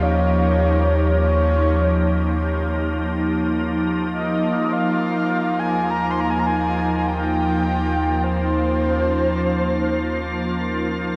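A serene, weightless ambient fragment opens with every part sounding at once. A breathy, flute-like synth lead carries the melody with subtle chorus and tape echo, and a pure, organ-like pad holds sustained chords up front. A very quiet, metallic vibraphone plays arpeggios with slow motor vibrato, while a deep, ominous drone rumbles on Eb beneath. Moving slowly at 51 BPM in 3/4 over a single Eb7 chord in Eb mixolydian, the music floats in a vast cathedral reverb with a 5.2-second tail. The lead melody stops at 10.6 s, and the pad, vibraphone and drone continue until 11.2 s.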